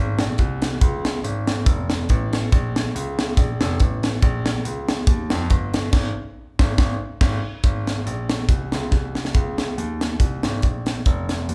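Uptempo gospel with a hopeful, jubilant swing, this short excerpt pairs a warm, up-front baby grand piano holding down the low bass register with a crisp, airy fusion drum kit of punchy kick, high-tuned snare, hi-hat and crash, the band playing live together in a lightly reverberant room and landing a shared accent from 5.9 to 7.6 seconds before a drum fill at 8.9 seconds pushes into the closing stretch.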